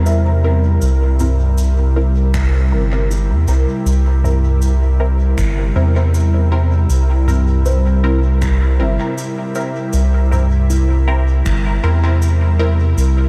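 A round, up-front sub bass with tube saturation anchors this hazy, spacious ambient dub excerpt at 79 BPM in C mixolydian over a single C7 chord, beneath an airy, breathy pad with chorus, muted filtered chord stabs soaked in phaser and dub echo, soft felt-muted upright piano arpeggios with audible action noise drifting in diffuse delay, a distant soft-mallet kit of cabasa, finger snaps and toms with dub echo, and a very quiet overdriven electronic kick that enters at 2.3 s, all set in light studio reverb.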